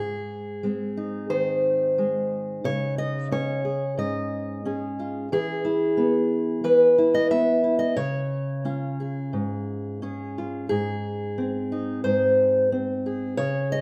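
A fingerpicked steel-string acoustic guitar, dark and up front with audible finger squeak, plays a warm, peaceful solo folk piece at 90 BPM in straight 4/4, tuned to A4 = 436 Hz, moving from Ab through Dbsus2, E and Db before returning to Ab at 10.7 seconds, all set in a large studio reverb in this cut from a longer piece.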